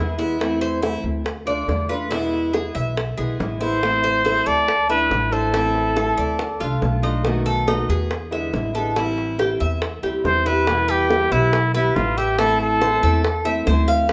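A wet, large-studio reverb frames this nostalgic, danceable cut of Cuban son and guajira, where an intimate, breathy trumpet with a soft attack and vintage vibrato sits up front, carrying the melody in a brief opening note and then in short phrases from 3.6 and 10.3 seconds. Beneath it, a dark, boxy fingerpicked parlour guitar and a metallic, double-strung Cuban tres picking arpeggios fill out a minor-key progression that moves to a new section near the end. A growly, woody pizzicato upright bass also sits up front, and tight, high-tuned bongos played with hard hands enter at 0.2 seconds.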